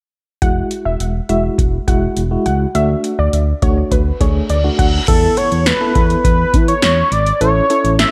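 This nostalgic, wistful synth-pop passage, cut from a longer piece, moves in a straight four-four feel under a light reverb. An analog drum machine sits up front with a deep kick, punchy snare, metallic hats and crash, all bathed in gated reverb. Beneath it, a smooth gliding bass with a dark sawtooth-and-square tone sustains, while a mellow FM electric piano with tremolo and a noise layer plays the accompaniment through a low-pass filter that sweeps across the opening section. A warbly, dusty, lo-fi pluck with chorus and tape echo adds a quieter second line until 4.9 seconds. A reverse cymbal rises from 4.3 seconds into an electronic impact, and at 5.1 seconds a thick, bold, nasal unison lead with detuned saws and vibrato takes the melody over a shift from Esus4 to A.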